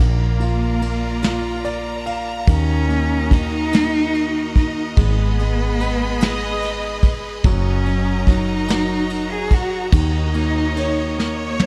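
A slow, straight six-eight lilt carries this dramatic, aching pop ballad, cut from a longer piece. A dark, close solo cello sings the melody with vibrato and portamento, while an intimate concert grand piano, with audible action noise and long sustain, lays down the accompaniment and adds a fill from 1.2 to 2.5 seconds; both cello and piano carry an analog delay. A rich studio string section holds sustained chords above, and a woody, round fretless electric bass sits up front underneath. A brushed drum kit with a punchy kick and rolled-off top enters at 0.4 seconds on kick, snare, ride and toms, ending with a fill, and a lush violin section adds a second line from 5.8 seconds. The echo-heavy small-room mix frames a progression moving from Bb through Ebm and Abm to Ebm7.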